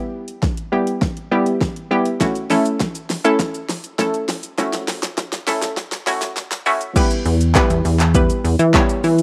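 A hollow, detuned square-wave pluck opens this confident, driving dance-pop excerpt in E dorian at 101 BPM, its chorused, sidechain-pumped chords moving from Em to A6. An overdriven deep house kit of punchy kick, fat snare, metallic hats, shaker, handclaps and crash carries a build-up with a drum fill and filter sweep, until the drop lands back on Em at 7.0 seconds and a funky, sawtooth-edged analog bass enters at 7.3 seconds with its own fast, decaying pluck and sidechain pump. The dry, close 1970s-style studio sound keeps all three parts up front.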